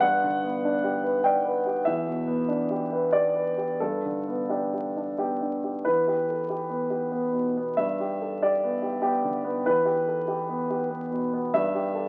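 A concert grand piano, up front with a deep bass, plays alone in this wistful, melancholic neoclassical minimalist fragment, moving in a flexible rubato three-beat metre across a range from E2 to G5. Its harmony sways between G and E minor chords before the chords fall away near 11.6 seconds. A moderate large-studio reverb surrounds the piano, and the sound carries the crackle of a very old 78 rpm record, in a passage cut from a longer piece.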